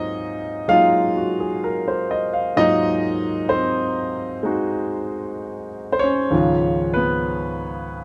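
Solo jazz piano sets a swinging, sophisticated mood in this short 8-second cut from a longer piece, moving at 64 BPM in 4/4 with a lilting swing on the eighth notes. A single concert grand carries everything from 0.0 to 8.0 seconds, reaching from Db2 up to F5 in Ab mixolydian. The instrument sounds clear and natural, with a deep bass and an up-front placement. The harmony rests on a rich Ab13 before shifting to Db9 at 6.3 seconds. A light reverb adds a touch of air around the piano.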